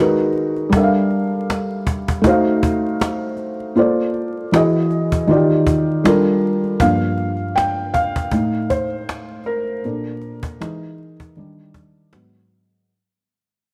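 Lo-fi hip hop in G minor at 79 BPM, reflective and melancholic, with a gentle 16th-note swing. A felt-muted upright piano sits up front with a soft, dark, intimate tone, moving through chords such as Gm7, F7b9/A, Bbmaj7 and Emaj9 over a woody, hard-handed cajon with faint snares in a small room. Plate reverb and vinyl crackle colour the recording, and from 6.8 seconds the piano takes a solo as the music fades out in this excerpt from a longer piece.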